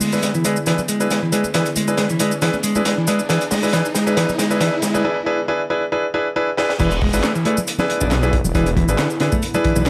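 A moderately reverberant studio sound frames this funky, swaggering breakbeat excerpt, where a crunchy, gritty drum kit with a punchy kick and high-tuned snare, overdriven electronic shaker and handclaps, soft-handed background congas and a very quiet riser drive a build-up beneath a warbly, nostalgic, filter-swept pad, a dark, clean fingered guitar riff and bright, worn baby grand piano stabs with delay, until a break at 5.0 s gives way to a drop at 6.8 s, when a thick, menacing detuned saw bass enters up front.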